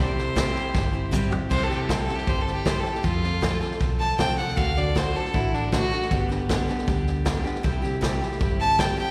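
A clear, focused fiddle with light vibrato and slapback echo carries the heartfelt, sunny melody of this honky-tonk and classic country excerpt at 157 BPM in C major, stepping into a solo at 1.5 seconds after a drum fill from 0.7 seconds, over a bright, full-bodied picked steel-string acoustic guitar, a dark, round foam-muted electric bass and a vintage drum kit with a punchy kick and dark cymbals, all set in a light, small-room ambience heard through a live venue's PA with recital hall reverb.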